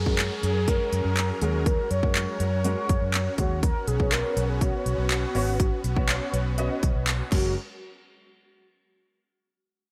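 Summery and euphoric, this dance-pop excerpt moves at 122 BPM in a straight 4/4, centred on F# major and tuned to A4 = 445 Hz. A mellow, horn-like synth lead carries the melody with a soft attack, vibrato, chorus and digital delay, while huge, detuned supersaw chords sustain beneath it with sidechain pumping. A dark, foam-muted fingered electric bass sits up front with a round, amped tone, and a dark grand piano with short sustain adds accompaniment through ensemble chorus and the same pumping. The house drum kit hits hard with a punchy, overdriven kick, crisp hats, handclaps and crash cymbal, and a downlifter sweeps in the background until 3.6 s. The harmony moves from F#add9 to Bsus2 at 3.6 s, and a distant group handclap joins very quietly at 4.1 s, all set in a bright 1980s-style digital production with light reverb.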